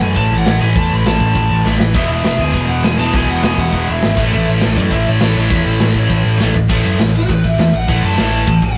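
Rowdy and energetic, this short punk rock cut drives along at 202 BPM in a straight 4/4, centered on A major. From the first beat, a lead guitar through a small cranked amp carries the overdriven melody up high, while a biting overdriven guitar hammers out a riff and an overdriven picked electric bass sits up front with a growly, punchy edge. The big rock drum kit pushes hard with bright cymbals, a boomy kick and a medium-tuned snare, throwing in fills at 1.7 and 6.4 seconds. A second, scooped and distorted electric guitar joins the riff at 1.9 seconds, tucked in the background. At 6.7 seconds the lead guitar breaks into a solo, and the whole thing has the rough, lightly reverberant sound of a rehearsal-room recording.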